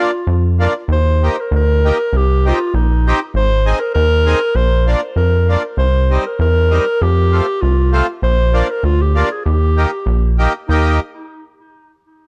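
A dry, gritty hardware recording captures a bouncy, festive alpine folk dance-band excerpt in Eb major at 98 BPM in a rubato 2/4. A mellow, punchy clarinet carries the up-front, classical-style solo melody through analog delay, while a reedy, full accordion plays the accompaniment. A rubbery, hollow square-wave bass with a resonant filter pluck and tube saturation enters at 0.3 seconds and sits loudest in the mix as the chords move through Bb, Eb, Cm, Ab and F.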